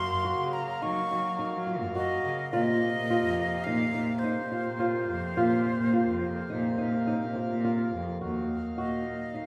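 This urgent, restless fragment of contemporary chamber music sets a breathy, bright metal flute on the melody, close-miked and up front with a soft attack. Beneath it, a hand-pumped harmonium holds sustained chords with a reedy, breathing, mellow tone, and an acoustic flamenco guitar plays boxy, thumb-plucked arpeggios with audible finger squeak. A single bowed cello carries the bass line, expressive with vibrato and portamento yet sounding distant. At 105 BPM in an uneven 5/4 with a straight feel, the harmony moves from Gbmaj7 to Bbsus2, then turns to Ebmadd9 at 8.2 seconds as a new section begins. A wet recital hall reverb lends the space of a church or concert hall, and the cello stops at 9.0 seconds while the other parts continue until the cut at 9.5 seconds.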